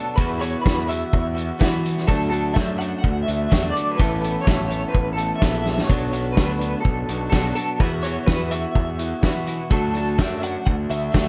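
Restless and bittersweet, this indie rock excerpt pairs a twangy, lo-fi lead guitar through a small old amp, shimmering with tremolo and tape echo, against a biting overdriven riff guitar with analog chorus, a bright, compressed second overdriven riff guitar tucked in the background, a growly fuzz bass up front, and a roomy, distant drum kit with a tight kick and rolled-off top that drops in a fill at 5.7 seconds, all moving through Esus2, D, Asus2 and Bmadd9 under light reverb and a veil of vinyl crackle.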